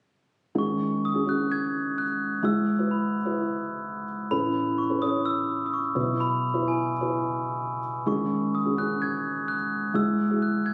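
Hopeful and uplifting, this short pop excerpt moves at 128 BPM in a straight 4/4, cut from a longer piece and tuned slightly above standard pitch. A felt-muted upright piano carries the accompaniment from 0.5 seconds, its boxy, dark tone and short sustain giving the chords an intimate, close-up character. Just after, at 0.6 seconds, a glockenspiel played with rubber mallets takes the melody high above, its bell-like ringing softened into something gentle and rounded. The harmony cycles through suspended and added-ninth colours, beginning on G#7sus4 and passing through Eadd9/G#, Aadd9 and Bsus4 before returning to G#7sus4 and Eadd9/G#. Both instruments sit up front in a room sound captured on a phone, touched with light reverb and compression that keep the whole piece tender and near.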